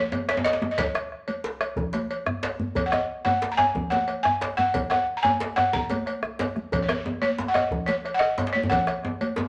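A woody, buzzing balafon played with rubber mallets sits up front, carrying the F# major pentatonic melody over a festive, driving West African drum ensemble in 12/8 at 121 BPM, with a round bombo, metallic cowbell, tight cracking djembe, deep soft-handed second djembe and ringing high-tuned congas in moderate studio reverb, before a drum fill at 8.7 seconds closes this short cut from a longer piece.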